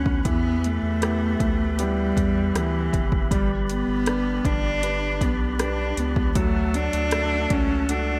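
A straight 4/4 deep house drum kit with a punchy kick, metallic hi-hats and rim clicks, overdriven, drives this hopeful, heartfelt pop ballad fragment, where an intimate bowed cello carries the melody with vibrato and an airy sul tasto tone over a clear concert grand piano with audible action noise, a round analog bass, and a fat tonewheel organ holding sustained chords through light overdrive and a fast rotary speaker, with slapback echo on the cello and piano, and the music set in a big arena-like scoring stage reverb as the chords move from Em to G to D.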